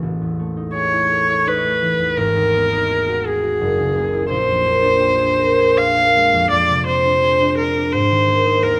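Impressionist classical duo in a wistful, hazy mood at 84 BPM in 3/4 with a free rubato feel, where a mellow, ringing concert harp, thumb-plucked and up front, opens the excerpt alone before a rich, smooth viola with light vibrato enters at 0.7 seconds to carry the melody above it, both set in a moderate recital hall reverb while the harmony drifts through colorful chords from Amaj7#11 to Abadd9.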